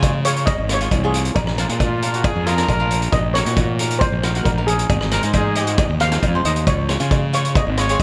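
A straight 4/4 calypso groove at 136 BPM drives this carefree, festive passage in Db major, cut from a longer piece. A street-band drum kit sits up front with a boomy kick, hi-hat and rim click, and a fuzzy, overdriven fingered electric bass adds a dark, round low end, while a cowbell with slapback echo rings in the background. A crisp, picked cavaquinho carries the accompaniment, also touched by slapback echo. From 0.3 seconds the steel pan takes the solo melody with a shimmering, metallic lead tone struck with medium rubber sticks, vintage and band-limited with its own slapback echo, and from 1.8 seconds a soft-attack trumpet in classical style adds a smooth second line. The harmony moves from Db through Bb and Ebm/Bb to Ab and home to Db, and the mix sits in a lush hall reverb that gives it a big arena sound.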